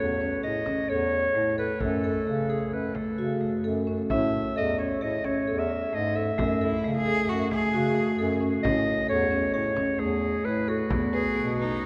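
A warm, up-front clarinet melody opens over hard-mallet marimba arpeggios and a mellow, distant bass clarinet with vibrato, with a deep frame drum played with soft hands in the background from 0.7 s, and a rich, nasal, bowed cello adding a second line from 6.6 s in this pensive, hypnotic piece of contemporary chamber music in 5/4 at 132 BPM, which moves through a cathedral-like reverb.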